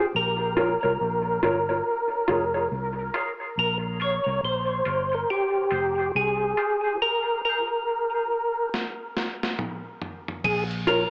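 Heard through an AM-radio filter and soaked in wet spring reverb, this meditative, spacious dub reggae excerpt at 70 BPM in swung 4/4 sets an up-front, percussive tonewheel organ melody with key click, chorus vibrato, a stopped rotary speaker and dub echo over a dark, clean, high-passed electric guitar that also trails dub echo and carries a filter sweep, all above a round, punchy, foam-muted fingered bass, moving through Bbm, Db and Fm in Bb dorian until the harmony drops away at 7.0 seconds and a gritty, compressed sampler-style breakbeat kit with a thumpy kick enters with a drum fill at 8.7 seconds, landing back on Bbm at 10.4 seconds.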